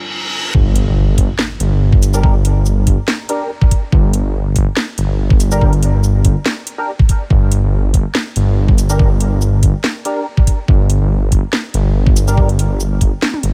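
Dry and dusted with vinyl crackle, this dark, brooding excerpt of deep dubstep in G minor at 142 BPM with a swung half-time feel opens on a brief, moody analog pad and a reverse cymbal before an impact lands the drop at 0.5 seconds, where a rumbling, detuned saw bass with tube saturation and a knocking, up-front electronic kick anchor the low end. From 0.8 seconds a garage kit adds a cracking snare, metallic hats, shaker and toms, and from 2.1 seconds hollow, nasal organ stabs ring out through chorus and dub echo until 12.5 seconds, ahead of a drum fill at 13.2 seconds.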